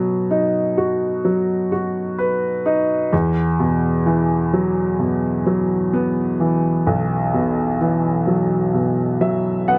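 Lightly reverberant, this short clip cut from a longer pop piece features a solo baby grand piano with an open, up-front tone and long sustain, moving from B to Esus2 at 3.1 seconds in an emotional, heartfelt mood before closing on a brief piano fill from 8.7 seconds.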